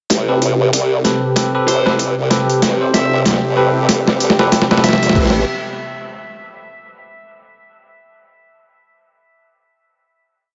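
A lightly reverberant, dark-topped mix carries this short, funky, swaggering glitch hop piece at 95 BPM in A minor, where a gritty, pitched-down boom bap kit with a high-tuned snare and crash sits up front in a swung 4/4 build and drum fill, backed by an overdriven, thumpy electronic kick, a saturated formant-sweep wobble bass with shifting wobble speeds, a warbling vintage analog pad pumping under sidechain, and bell-like electric piano stabs in dub echo, while a distorted, picked lead guitar adds short bluesy phrases from 1.7 seconds before everything settles on a final chord at 5.2 seconds.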